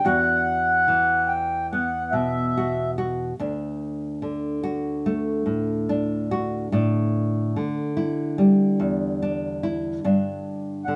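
A reedy, airy accordion and a dark, woody fingerpicked nylon-string guitar open this pastoral, nostalgic acoustic folk piece together, the accordion sounding its high second line until 2.9 seconds and returning briefly at 10.8 seconds while the classical-style guitar carries Esus2, D, A7sus4 and G5 chords throughout, both up front in a live room with moderate studio reverb.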